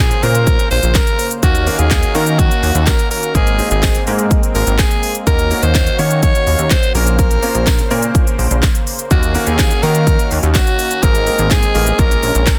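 Bittersweet and energetic, this dance-pop excerpt at 125 BPM in 4/4 sets a raspy, gritty alto saxophone solo with vibrato over a punchy house drum kit with handclaps, crisp hats, a cracking snare and kick, while a glossy chorused synth bass, a clear grand piano with audible action noise and a lush, detuned unison pad all pump with sidechain. The saxophone carries digital delay, a barely audible electronic downlifter slips past between 0.7 and 1.4 seconds, and a very quiet jingly tambourine joins at 0.9 seconds. Chords cycle through Bbmadd9, Ebm7 and Abadd9 in a dense, heavily limited modern master.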